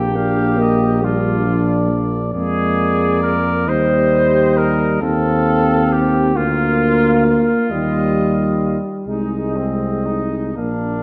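From the first moment, a brass band sounds together in a slow, hymn-like classical passage in Eb major, cut from a longer piece. It moves in a rubato 6/8 at around 39-47 BPM, counted in dotted quarters, and the mood is lyrical and serene. A distant, roomy cornet carries the melody high above, while an up-front flugelhorn with light vibrato sings a second line. Beneath them, a punchy, close-miked euphonium sits in the background and a very quiet trombone adds accompaniment, both with light vibrato, as a mellow tuba anchors the bass from the front of the mix. The harmony moves gently from Bb through Eb and F7/Eb before coming to rest on Ab/C at 9.1 s, near the close. A moderate stage reverb and a dark, warm production give the group a soft, glowing blend.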